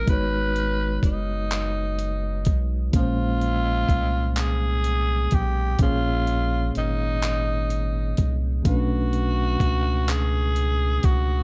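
A growling tenor saxophone carries the melody in this brief, sultry and yearning slice of slow six-eight R&B at 42 BPM, its breathy, raspy tone marked by light vibrato. Beneath it, a clean tine electric piano heard through built-in speakers moves from Abm9 to Bbm9 at 2.9 seconds and on to Bm9 at 8.7 seconds, while a rubbery, hollow, nasal square bass with a resonant filter pluck sits up front. A compressed, gritty, dusty soul sampler-style kit, re-recorded in a large room, adds handclaps, hi-hat and a thumpy kick, all within a dark, dry production.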